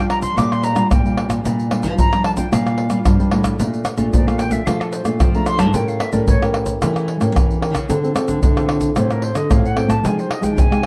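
Joyful and playful, this short cut from a longer samba and choro piece sets an airy, distant concert flute with tongued, expressive vibrato over two thumb-plucked classical nylon-string guitars with fresh strings, one playing the chordal accompaniment and the other carrying the bass. Pandeiro, tamborim, tube shaker and a deep surdo sit close, dry and up front, struck with hard hands, while chords such as Bbmaj7, A7b9 and Fm9 pass beneath a flute solo that begins at 3.6 seconds. The production is dark and warm, set in a moderate large studio reverb, with some lossy compression artefacts.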